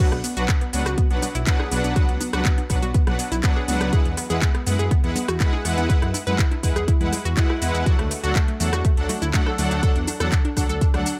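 A punchy electronic kick sits up front from 0.5 seconds, giving this bittersweet, expansive progressive house fragment a steady, straight pulse with a tape-touched, small-room character. Beneath it, a dark detuned saw bass rumbles deep and saturated, its beating sawtooth tone held in sustained notes that pump with sidechain. A soft supersaw plays smooth, gently attacked stabs, while a round, bright analog pluck spins arpeggios through chorus, cassette tape coloring and digital delay, both breathing with the same sidechain pumping. The house drum kit adds handclaps, metallic hi-hats and shaker, and a background layer of electronic rim clicks and congas fills in the groove. The harmony moves from Bm to Eadd9 at 3.9 seconds and then to D, all set in a digital ambience.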